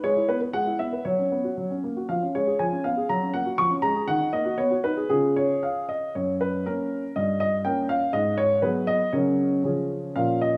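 Cheerful and elegant, this short cut from a longer classical-period piano sonatina moves in 2/4 at 112-124 BPM with a supple rubato feel, set in F# major. A single grand piano carries everything, its warm, smooth, vintage tone placed up front and spanning from F#2 to C#6 across the full 10.6 seconds. The opening phrase moves through its harmonies, touching a suspended chord that settles onto F#, then leaning on dominant colours before turning toward D# minor and G# minor shades on the way to a cadence on C#. At 6.2 seconds a contrasting passage begins, returning to F# before a darker half-diminished chord adds a brief touch of tension, then easing back through G# minor toward C# at the close. A moderate recital hall reverb, with a decay of 1.8 seconds, gives the instrument a gentle sense of space around its poised, graceful phrasing.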